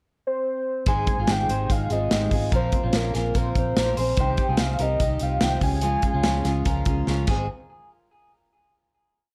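Jangly indie pop with a nostalgic, breezy mood, opening on a velvety, detuned synth lead with chorus and vibrato that carries a motif-based melody from 0.3 seconds. At 0.9 seconds the band joins: full-bodied acoustic guitar strumming open chord shapes, a ringing, slightly broken-up electric guitar figure doubled in thirds, a round, foam-muted bass driving eighth notes, and a polished, up-front drum kit with bright cymbals and a brisk backbeat. A drum fill at 7.1 seconds leads to a final hit, and the whole short piece sits in a moderate club reverb with the worn, warbly pitch drift of old cassette tape.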